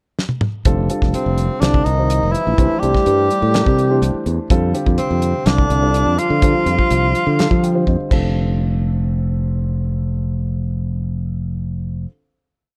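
A damped 70s drum kit opens this bright, slick electric jazz fusion piece with a pickup fill at 0.2 seconds, then settles into a dry halftime groove with a fat snare, tight kick and dark cymbals. A bright, punchy fingered electric bass plays a syncopated riff up front, while a mellow concert grand piano adds funk chord rhythms in quartal voicings. A breathy tenor saxophone carries a motif-based melody with vibrato and scooped notes, doubled an octave below by a softer trombone in the background; after drum and piano fills, the piano and bass land on a final hit at 8.3 seconds that rings until 12.1 seconds, all in a close, warm production.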